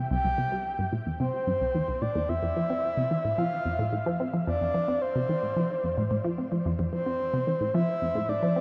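A juicy, squelchy blip pluck riff opens this luminous, expansive ambient fragment, with chorus, phaser and tape echo and a filter sweep running across its arpeggio, joined at 0.1 seconds by a breathy, flute-like synth lead carrying a soft, sustained, vibrato-laden melody through shimmer reverb and tape echo, both up front in a huge, wet reverberant space as the harmony moves from C to F at 2.3 seconds.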